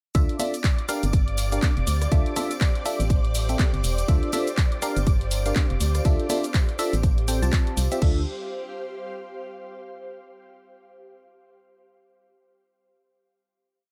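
A dry, punchy mix opens straight into an energetic, soulful piano house drop at 122 BPM in D minor, swung on the sixteenths, with an up-front, tape-warm four-on-the-floor kick, a large-room analog drum machine carrying claps, rim, cabasa, hats and crash, and background tambourine and congas. A hollow, organ-like FM bass plays a syncopated riff beneath a biting, barking FM electric piano chord riff treated with phaser and dub echo, while a silky, detuned string pad with 12-bit grit holds a high note, and the bass, electric piano and pads all pump to the sidechain. An ethereal, airy pad with tremolo and reverb enters at 1.3 seconds and rings on past the drop through the final D minor chord that arrives at 8.0 seconds, lasting until 9.9 seconds.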